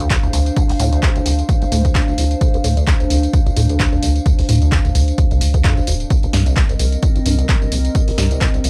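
Dry, gritty hardware sound frames this trippy acid house excerpt at 130 BPM in D phrygian with a light 16th-note swing, where a squelchy, resonant sawtooth acid bass riff runs through a filter sweep with phaser, overdrive, chorus and tape echo, a round, deep triangle-and-sine bass and a moody, detuned square-and-sawtooth pad with slow attack and chorus and phaser all pump with sidechain, an up-front electronic kick drives the beat, and a punchy drum machine adds handclaps, hi-hat, snare and tambourine as the harmony moves from Dm7 to Cm7 at 6.1 seconds.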